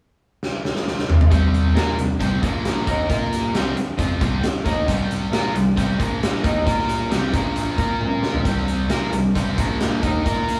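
A straight 4/4 pulse at 134 BPM drives this gritty, swaggering classic rock cut in C minor, where a big acoustic drum kit with a punchy kick and medium-tuned snare sits up front and opens with a fill at 0.4 seconds before two bright, overdriven picked electric guitars and a growly, direct electric bass in the background join at 1.3 seconds to churn through power chords on C, Bb and Eb, all set in the ambience of a small stone room as though the band were playing live together.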